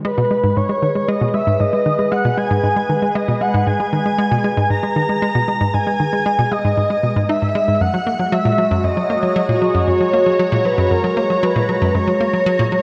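Ambient, sequencer-driven space music in G# minor, this excerpt moves at 116 BPM in a straight 4/4 and carries a mysterious, cosmic mood. A hollow, bouncy square-wave pluck sits up front with a bright, fast-attack riff in the low-to-middle register, treated with chorus and tape echo. Alongside it, a phased analog pad holds sustained chords, its detuned sawtooth tone swirling and evolving with an airy noise layer, slow attack and long release, shaped by phaser and chorus. Over the top, a breathy, flute-like synth lead sings the melody between A#4 and A#5, soft and sustained with vibrato, ensemble chorus and tape echo. The harmony rests on G#m before shifting to F# at 7.8 seconds, and all three parts play throughout, bathed in a lush hall reverb.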